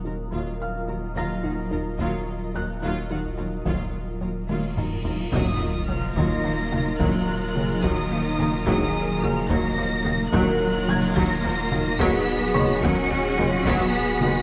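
A futuristic, relentless cinematic hybrid orchestral and electronic film score in Eb minor at 72 BPM in 6/8 opens with a cloudy, evolving granular pad, a round sine sub bass, a felt-muted upright piano with delay and audible action noise, lush bowed strings (a smooth violin second line, expressive violas with portamento, focused cellos and expressive double basses) and a very quiet, squelchy blip pluck playing arpeggios. Distant heavy taiko drums enter at 2.0 s, and a huge, bright cymbal swell and sub drop arrive at 4.8 s. On the impact, these give way to a soft-attack, intimate violin melody high above a mellow, very quiet trombone section and dark, roomy French horns that join at 6.2 s, all in a moderate scoring-stage reverb.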